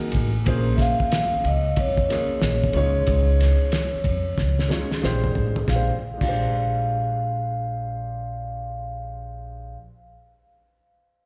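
Cool and mellow, this jazz-hop excerpt sets a ringing soft-mallet vibraphone melody with slapback and tape echo over a dark, long-sustaining grand piano with slapback echo, a woody pizzicato upright bass up front, and a muffled, cloth-damped drum kit with a fat snare that plays a fill from 4.4 seconds and stops at 6.4 seconds, while maracas and congas sit in the background only until 0.5 seconds, the recording heard as a live gig through the venue's PA in recital hall reverb.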